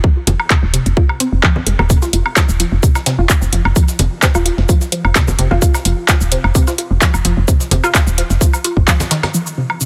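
A resonant blip pluck and a tight, layered electronic kick open this hypnotic, cool minimal techno excerpt at 129 BPM in 4/4, with a light swing on the 16ths. The squelchy pulse-and-sawtooth pluck riff is treated with phaser, lush chorus, tape echo and sidechain pumping, while a filter sweep runs across the synth arpeggio sound for most of the clip. A woody, round FM bass sits low and up front with its own sidechain pumping. Alongside it come a booming analog drum machine with handclaps, metallic hats and shaker, plus tape-echoed congas and woodblock. From 1.9 seconds a gritty, sampler-style tambourine and snare drum adds a very quiet layer, and a blurred granular cloud pad surfaces faintly at 9.6 seconds, all held in a digital ambience.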